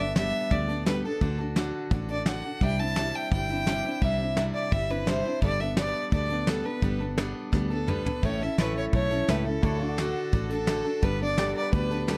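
Honky-tonk and classic country in an easygoing, heartfelt mood, this passage is cut from a longer piece and moves with a straight, steady feel. A clear fiddle carries the melody up front, bowed by one player with light vibrato and an even, smooth tone, while a full-bodied acoustic guitar picks the accompaniment, also up front. Underneath, a fingered electric bass gives a round, foam-muted low end, and a soft brush kit adds a fat snare, tight kick, hi-hat and toms with a dark, rolled-off top. The kit plays a fill from 7.5 to 8.2 seconds, leading into the repeat of the opening section, and a bright, twangy pedal steel guitar enters in the background at 8.6 seconds with compressed, sustained chords and volume swells. Light reverb and close, detailed microphones keep the sound intimate, as the harmony moves through Gadd9, D and Cadd9 and later shifts to A before settling back on Gadd9.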